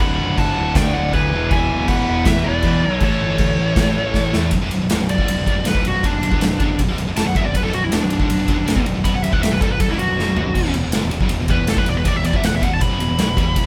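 A dark, up-front high-gain lead guitar carries this epic, relentless heavy metal excerpt, joined by a bright second lead line and a double-tracked, overdriven rhythm guitar in a half-time opening before they drop out around 4.3 and 4.5 seconds and the solo takes over, driven throughout by two scooped high-gain guitar riffs (one very quiet), a fuzzy, overdriven picked bass and a punchy acoustic drum kit with fills at 4.2 and 10.2 seconds, all played live in one room with light reverb.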